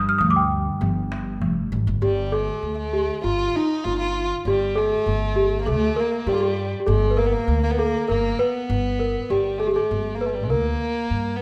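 A moderate recital hall reverb surrounds this short, stately excerpt of Arabic maqam ensemble music in G maqam saba, moving at 99 BPM in a straight 4/4 with a passionate undercurrent. A worn celesta carries the melody throughout, its bell-like, sweet tone struck with soft felt hammers and heard close-miked, dry and slightly out of tune. Beneath it, a woody pizzicato upright bass with steel strings sits up front. In the opening moments, a distant bowed double bass holds a low drone with vibrato and expressive portamento, while a small, crisp metal-shelled darbuka sounds in a live room; the darbuka stops at 2.0 seconds and the drone ends at 2.1 seconds. From 2.0 seconds a single violin takes up a second line, played sul tasto with an airy bow, soft attack and vibrato, intimate and close against the celesta.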